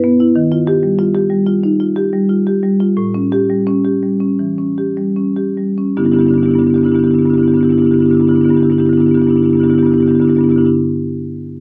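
Contemporary classical music for solo marimba, this brief cut from a longer piece feels flowing and playful. The marimba is played with medium mallets, its woody rosewood bars sitting up front with a vintage, band-limited tone and light reverb. The pace slows over the first 6.0 seconds as the harmony moves from Ebadd9 to A7, settling on G6 at 6.0 seconds.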